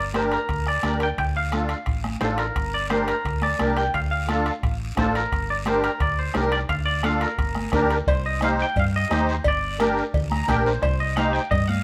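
Driving and danceable, this cumbia excerpt puts a twangy, clean electric guitar melody with spring reverb up front beside a shimmering, reedy musette accordion and a dark, round, punchy hollow-body electric bass. Behind them sit a soft-beater bombo, bright, high-tuned, saturated congas and ringing metal-shell timbales and cowbell, while a raspy, close guiro adds its own texture. The harmony moves to C minor at 8.1 seconds for a new section, where the accordion adds a brief fill at 10.1 seconds, all within a moderate studio reverb.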